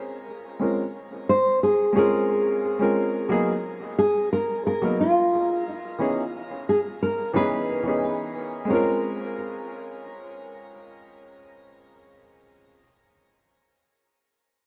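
A straight 4/4 pulse at 89 BPM carries this wistful chillout excerpt, which is cut from a longer piece and tuned slightly flat of standard pitch, at A4 = 437 Hz. A thumb-plucked nylon-string guitar carries the melody from the opening moment, classical in tone and dark, with audible finger squeak, set up front and bathed in shimmer reverb and tape echo. At 0.6 seconds a dark grand piano enters as accompaniment, mellow and natural with short sustain, also up front, roughened by vintage 12-bit sampler grit and trailed by shimmer reverb and dub echo. The harmony moves through lush minor-ninth chords, Bbm9 to Abm9 to Dbm9, returning to Bbm9 at 8.7 seconds as a second section begins. The whole sits in a moderate echo chamber with a 2.1-second decay, giving an echo-heavy mix with a hazy, reflective atmosphere.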